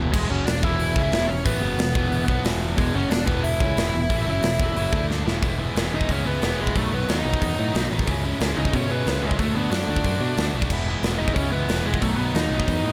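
A big arena sound with a lush hall reverb frames this energetic, rowdy punk rock excerpt at 182 BPM in straight 4/4, with a double-tracked, brilliant distorted guitar riff carrying slapback echo up front over a growly picked bass and a big rock kit with a punchy kick and brilliant cymbals. A dark, smooth overdriven lead guitar carries the melody above them, starting in E mixolydian over power chords. After a drum fill at 5.1 seconds, the music shifts to E major at 5.4 seconds and moves through E, B, C#m and D chords.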